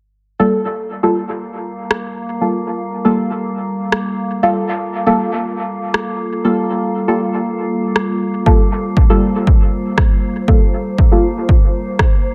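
Set in a light reverb, this cavernous, nocturnal dub techno excerpt in G minor moves at 119 BPM in a straight 4/4 on a Gm9 chord. From 0.4 seconds, a warbling, lo-fi tape-like pad holds dark sustained chords under a filter sweep, while a deep, nasal chord stab with chorus, phaser and dub echo sits up front. Both pump against the sidechain, and at 0.8 seconds a calm, glassy texture of drifting overtones joins them. A dry electronic rim click with dub echo enters at 1.9 seconds, and a punchy analog kick lands up front at 8.5 seconds.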